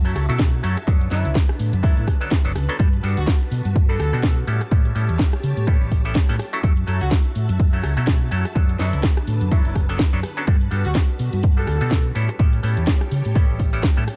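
Groovy and sensual, this filtered disco house cut in B minor moves at 125 BPM with a swung 16th feel, as a punchy, overdriven electronic kick and a round, hollow-body fingered bass sit up front beneath cracking snare and bright hats, a twangy, nasal clav phasing through the chords, a lush sawtooth string machine with ensemble chorus in the background, and a tight horn section with sampler grit and digital delay carrying the melody from 1.1 to 12.1 seconds over F#m7, Bm7, Gmaj9 and A7, all under sidechain pumping on the clav, strings, bass, horns and hats in a dark production.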